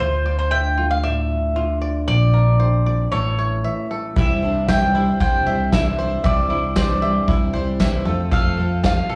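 A straight 4/4 pulse at 115 BPM carries this yearning, wistful indie folk excerpt, heard as a live club gig through the PA with light reverb, where a round, up-front mandolin sings the melody over a fingerpicked steel-string acoustic guitar with audible finger squeak, bright, twangy banjo arpeggios and a dark, amped fingered electric bass, the three acoustic strings each carrying slapback echo, before a short break at 3.6 seconds opens at 4.2 seconds into a fuller arrangement that adds a shimmering, octave-doubled plugged-in twelve-string guitar with its own slapback, a smooth brush drum kit with a punchy kick, and a jingly tambourine tucked in the background from 4.7 seconds.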